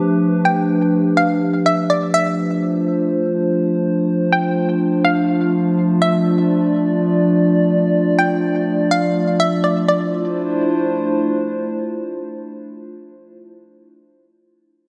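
Ethereal and hazy, this half-time hip hop excerpt at 124 BPM in D dorian rests on a warbly, tape-like pad of dark, detuned sustained chords shifting from G9 to Dm9 at 2.1 seconds, while a hollow square pluck with chorus and tape echo carries a bouncy, evolving melody from 0.5 to 11.3 seconds, all set in a lush hall reverb.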